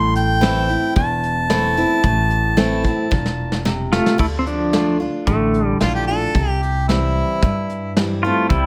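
Close, detailed microphones and a light reverb give this brief excerpt of honky-tonk and classic country an intimate, present sound, with a brooding, lonesome mood over a straight 4/4 feel. A smooth-topped harmonica opens with a pop-style solo up front, while a bright, picked steel-string acoustic guitar picks out accompaniment and a woody upright bass plucks the low end beneath it. A vintage brush drum kit with a dark, rolled-off top, a medium-tuned snare and a tight kick supports the band, and adds a fill around 3.1 seconds. At 3.9 seconds a clean, compressed pedal steel guitar, played with fingerpicks, takes over the melody with slide and volume swells, sitting at the front of the mix. The harmony moves from A minor to D minor and then to C, and the harmonica carries on as a second line until it drops out at 7.9 seconds.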